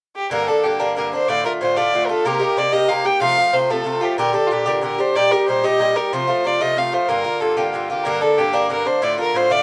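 A straight 6/8 pulse at 124 BPM drives this wild Celtic folk piece in G minor, tuned to A4 = 443 Hz, where a single bowed fiddle with a nasal, earthy tone carries the melody up front from 0.2 seconds, while a picked, double-strung acoustic Irish bouzouki with a metallic ring plays accompaniment just as close from 0.3 seconds, moving through Gm, Dm, Cm7 and F under light reverb in a short passage cut from a longer piece.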